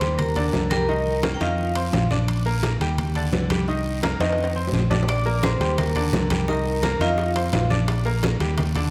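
A bright, airy vibraphone with hard mallets and medium motor vibrato leads this festive, danceable salsa excerpt, dropping out at 2.1 seconds and returning at 5.1 after a percussion fill, over a brilliant, worn concert grand piano with audible action noise, a dark, round fingered electric bass up front, ringing low-tuned congas and metal-shell timbales in the background, a raspy guiro and, from 5.1 seconds, very quiet saturated bongos, all set in a large studio reverb.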